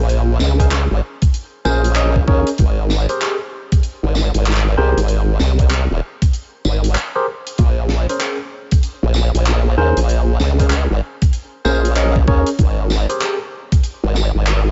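A 4/4 groove swung on the sixteenths drives this swaggering, funky glitch hop fragment, cut from a longer piece. An electronic kick drum, layered, knocking and tape-warm, sits up front from 0.6 seconds, while a tight metal drum kit fills in with handclaps, hi-hat, a medium-tuned snare and tambourine in an airy, big-room sound. The formant-sweep wobble bass anchors the low end from the very start, a saturated, compressed blend of pulse wave and sine with a fast attack, sustained notes, chorus and tube saturation, and it wobbles prominently at the front of the mix. Above it, a barky tine electric piano plays bright, clean stabs that pump against the sidechain and trail through phaser and dub echo until 13.4 seconds. The harmony moves from Bbm9 to Ab and back, settling on Abmaj9 near the end, all wrapped in a studio reverb with a softened top.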